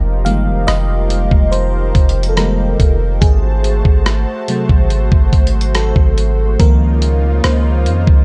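A dark, warm production sits in a digital ambience, giving this short excerpt of contemporary R&B a moody, late-night air at 71 BPM in a straight 4/4. A thick, nasal sawtooth pad with chorus holds sustained chords from the start, its detuned unison voices bright and slow to bloom, moving through Fm11, Ab7b9 and Db69. A deep, sine-toned 808-style bass sits up front with a fast attack and long, decaying notes. The FM electric piano, layered with a soft pad and a breath of noise, takes the solo role with a dreamy, detuned shimmer, entering at 0.2 seconds. At 0.3 seconds a gritty, compressed sampler-style drum kit joins up front, its thumpy kick, hi-hat and rim click carrying a dusty soul character.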